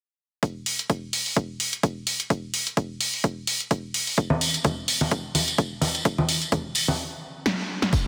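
Soulful and bittersweet, this house groove cut from a longer piece swings lightly as a layered, punchy electronic kick with a high-pass filter and a tape-tinged analog drum machine (hi-hat, snare, tambourine) sit up front from 0.4 seconds, joined at 4.2 seconds by vintage, band-limited acoustic tambourine and congas played with soft hands, before a stop at 7.0 seconds and a drum fill at 7.5 seconds close out the dense, heavily limited mix under light reverb.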